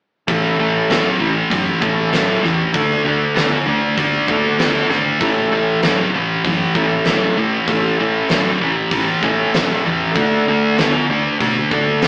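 At 0.3 seconds the whole trio-plus-organ kicks in together: a raunchy, driving blues rock groove with a southern rock streak, moving at 97 BPM in a straight 4/4 in A major. Up front, a thick, double-tracked fuzz guitar plays a picked, distorted riff, while a percussive tonewheel organ holds full, lightly overdriven chords colored by chorus vibrato, third harmonic percussion and a slow rotary speaker. Further back, a fretless electric bass adds a round, amped low end, and a big acoustic arena kit drives hi-hat, a punchy kick and a fat snare from the background. The harmony moves between A and D, and between 8.3 and 10.2 seconds the organ breaks out with a fill before the change back to D. The band sounds like it is playing live in one room with a wet studio reverb, squeezed through an AM radio sound in this short cut from a longer piece.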